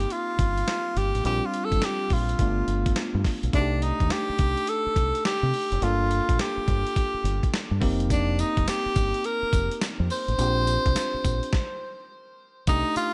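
Punchy and slick, this 105 BPM new jack swing excerpt in C dorian sets a breathy, whispered tenor saxophone melody up front over bell-like tine electric piano chords, a round, dark fingered electric bass and a gritty, thumpy soul sampler-style drum kit with hi-hat, snare and tambourine swung on the 16ths, moving through chords like F9sus4, Cm69 and Bb69 before a stop at 11.5 seconds, all set in digital ambience.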